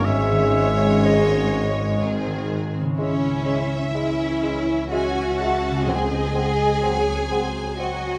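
In a rubato 3/4 at 62 BPM, this yearning, elegiac passage from a slow romantic symphonic movement in C# minor sets a distant, vibrato-laden violin section on the melody above a second violin line, a pure, very quiet flute ensemble, a roomy clarinet and a clear oboe that stops at 2.0 s, while bright, ringing harp arpeggios, a lush viola section, mellow French horn chords, a vintage-toned bassoon, a tuba that falls away at 2.8 s, a close double bass section and an up-front, smooth-topped cello section carry the harmony and bass, with round, soft-mallet timpani entering at 5.9 s, inside a moderate scoring-stage reverb as the chords move from G#sus4 through G# to C# minor.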